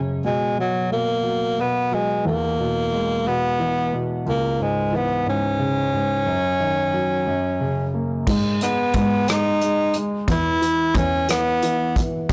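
A raspy tenor saxophone carries the melody in this heartfelt, romantic pop ballad, its gritty, punchy tone softened by light vibrato and a smooth top as it sits up front from 0.3 seconds onward. Set in a slow six-eight at 60 BPM with a straight feel, the tune is supported by a polished grand piano accompaniment that stays present and close in a low register throughout. The harmony moves through B5, E, C#m, D#m7/F# and F# before turning to G#m and E5 in the closing part. At 8.3 seconds a bowed cello enters on the bass line, focused and boxy with vibrato from a single player, alongside an acoustic drum kit in a small room, where a tight kick, hi-hat, rim clicks and a crash cymbal are played with bundle sticks. Light, small-room reverb surrounds the ensemble, while the whole recording is blown-out and overdriven, giving this cut from a longer piece a saturated edge.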